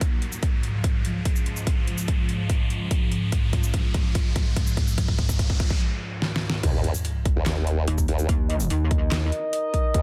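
An evolving, detuned wavetable pad with phaser and sidechain pumping opens this chaotic, heavy wobble dubstep excerpt at 145 BPM in half-time, over a punchy overdriven kick, a dubstep kit with deep snare, metallic hats, claps, shaker and crash, and a building riser and noise sweep into a sub drop, until the drop at 6.6 seconds unleashes an up-front formant-sweep wobble bass, joined by dark brass ensemble stabs at 7.7 seconds and a saturated pulsing pluck wobble bass at 7.9 seconds, all in a dense, heavily limited mix.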